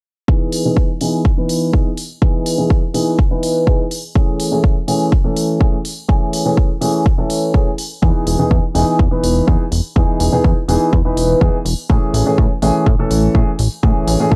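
A punchy, up-front electronic kick and crisp, pumping hi-hats drive this sunny, funky filtered disco house excerpt at 124 BPM in E major, with a barely audible tube shaker beneath a dark, mellow grand piano that alternates Emaj7 and Amaj7 through phaser, sidechain pumping and a filter sweep, until a plucky, tube-saturated analog bass joins at 8.0 s, all captured as a dry, gritty hardware recording.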